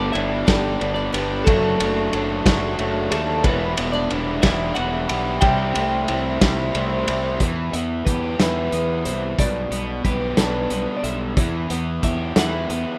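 Wistful, jangly indie rock in a straight 6/8: a twangy, chorus-soaked twelve-string electric guitar carries the melody over a bright, overdriven raw garage guitar riff up front and a compressed overdriven electric guitar with lush chorus tucked in the background, while a punchy fuzz fingered electric bass and a muffled, gritty loose indie drum kit with dark cymbals drive things along, and a very quiet, woody koto adds a second line until 7.5 s, all in a rough home demo mix with small room ambience.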